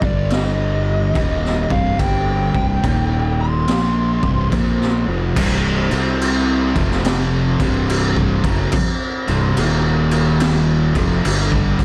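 A dark, lightly reverberant production opens on a slow, ominous and hypnotic stoner and doom metal excerpt at 71 BPM in C minor, with a swung 4/4 feel. A saturated garage drum kit with a boomy kick and a high-tuned snare sits up front beside a growly, overdriven fingered bass, while two thick fuzz guitars grind out the riff in the background and a very quiet, rumbling ring-modulated drone sustains chords beneath. A compressed fuzz lead guitar with tape echo carries the melody only until 4.5 seconds, and a bright, double-tracked tight distorted guitar joins the riff at 5.4 seconds.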